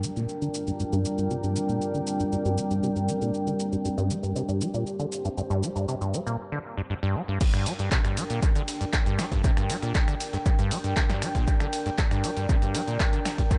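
A squelchy, resonant sawtooth acid bass sits up front in this gritty, trippy acid house piece at 118 BPM in G minor, playing a riff coloured by tube saturation, 12-bit sampler grit and dub echo, with a filter sweep on it until the drop at 7.4 seconds. Beneath it, a detuned analog pad holds sustained chords with sidechain pumping, joined from 0.5 to 6.4 seconds by a warbling, vintage ambient pad soaked in chorus and reverb, while a punchy analog drum machine plays hi-hat, ride, shaker, finger snaps, handclaps, snare and crash through analog delay. At the drop an up-front electronic kick enters alongside a very quiet, compressed breakbeat-style kit of hi-hat, shaker and high-tuned snare, in an echo-heavy mix with spring reverb and a dull top end.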